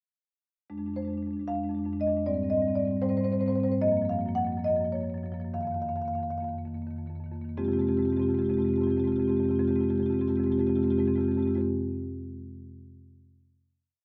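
A moderate recital-hall reverb surrounds an up-front solo marimba, its padauk bars giving a woody, band-limited, almost vintage tone under medium mallets. This brief contemporary classical piece is hypnotic and reflective, moving in a rubato 6/8 at roughly 55-78 BPM in dotted quarters, centred in F dorian. From its entry at 0.7 seconds the marimba spans F2 to Gb5, combining a single-line melody with chordal, hymn-like writing. The harmony passes through Fm6, Abmaj7, Gbmaj7 and F7sus4, and the pace begins slowing down at 3.0 seconds. At 7.6 seconds the piece settles onto a final Fmadd9 chord that rings into the hall.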